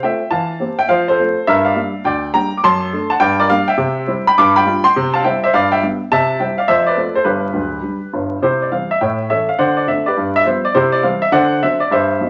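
A crackle of vinyl sits under a wet studio reverb as an up-front, woody upright piano plays solo in this swinging, exuberant stride jazz excerpt. The polished, short-sustained piano spans a broad register from deep bass to upper treble, moving through brisk changes before a new section arrives at 8.4 s and carries it on until the cut at 12.3 s.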